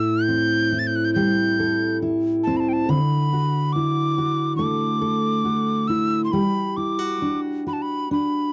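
Celtic folk in the form of a slow air, this excerpt moves at a rubato 65-72 BPM in 4/4 and G major, carrying a nostalgic, tender mood. A metal mid whistle sings the melody, airy and tongued with a chiff and vibrato, miked close and placed up front. Beneath it, a fingerpicked jumbo steel-string acoustic guitar provides full-bodied, warm accompaniment, also sitting up front in the mix. The harmony drifts from Am7 to Dadd9 at 2.9 seconds and settles on Gmaj7 at 6.3 seconds. The sound is a dry, close 1970s-style studio recording touched with light reverb, and the fragment is cut from a longer piece.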